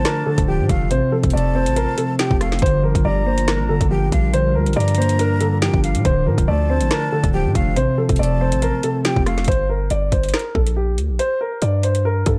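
Tense and cold, this half-time drill cut in G minor at 140 BPM sets a dark concert grand piano melody over a distorted, heavy 808-style bass and a hard-clipped, metallic-hatted drill kit, with a breathy silver flute under tape echo, a clean fingered electric guitar in spring reverb and a very quiet detuned analog pad filling the first 9.5 seconds before piano, bass and drums carry on alone to the end at 12.4 seconds, all in a dry, gritty hardware recording.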